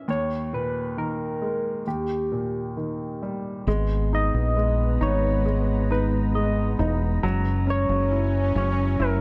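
A straight 4/4 pulse at 67 BPM carries this heartbroken, emotional pop ballad excerpt, where an intimate grand piano with audible action noise and a gentle, keys-like FM synth lead with chorus, phaser and vibrato open over D#sus4 and D# before a dark, punchy fingered electric bass and a mellow French horn section with light vibrato enter at 3.7 s as the music settles into G# minor on G#madd9, joined at 4.4 s by a glassy, ethereal FM pad with ensemble chorus and its own reverb sitting in the background, moving to F#7 under a light studio reverb.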